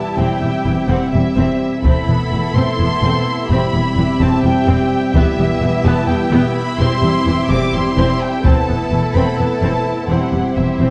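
A woody violin section with a soft attack carries the high melody of this dark, epic orchestral film score in 7/8, joined from the start by a smooth second violin line, lush violas and mellow French horns holding sustained chords, while cellos and double basses anchor a low E from 0.2 seconds. Heavy-stick taiko drums, compressed and saturated, play from 1.8 to 9.3 seconds as the harmony moves between C over E, A add-nine over E and E minor. The music sits in a wet recital hall reverb with a warm production.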